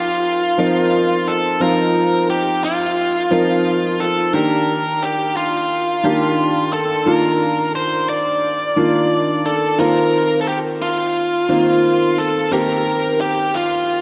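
A straight 4/4 pulse at 88 BPM carries this romantic, nostalgic pop piece in F mixolydian, cut from a longer work and tuned to A4 = 439 Hz, as the chords move from F7sus4 to Ebmaj7 at 4.3 seconds and back to F7sus4 at 9.8 seconds. Up front, a biting, overdriven electric lead guitar plays the melody between F4 and D5 with a diffuse ambient delay, while a clear concert grand piano accompanies from Eb3 to Bb4, its smooth, vintage tone and deep bass colored by analog chorus. Both parts play throughout, set in a dreamy mix soaked in a wet plate reverb with a 2.7-second decay.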